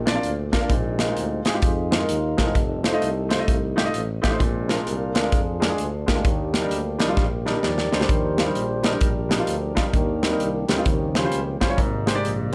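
Light reverb frames this uplifting, soulful uptempo gospel excerpt at 130 BPM with a swung feel in Eb major, where a polished, present grand piano sits up front as accompaniment over an acoustic drum kit with a punchy kick and an airy small-room sound, a close-miked tuba plays the bass with soft attack and vibrato, and a clean tonewheel organ with key click and a stopped rotary speaker holds sustained chords in the background, the drums breaking into a fill at 7.2 seconds.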